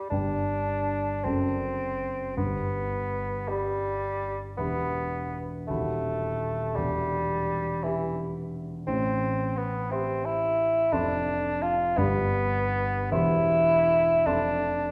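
Tender and unhurried, this romantic classical excerpt in G major sets a soft-edged bassoon with a light vibrato singing the melody up front over a dark, mellow grand piano with a deep bass, moving in a rubato 6/8 at around 47-60 BPM through a reverberant recital hall from 0.0 to 14.9 seconds, its harmonies drifting from G through E minor to A minor seventh and back toward G.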